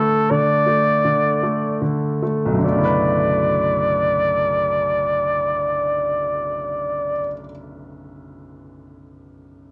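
The rhythm moves in a slow, straight 6/8, counted in dotted quarters at roughly 48-56 BPM, and it is slowing down through the opening bars. This melancholic, aching pop instrumental sits in B minor, drawn from a longer piece. A punchy, vintage-toned flugelhorn carries the solo melody with vibrato, ringing clearly between A4 and D5 until it falls silent at 7.3 seconds. Beneath it, a natural-sounding grand piano holds the accompaniment across a span from B1 to B4, moving from a D5 chord to Bm11 at 2.6 seconds and then playing on alone until 9.7 seconds. Both instruments sit up front and carry the soft grain of a home cassette recording, bathed in a wet spring reverb and a touch of studio ambience.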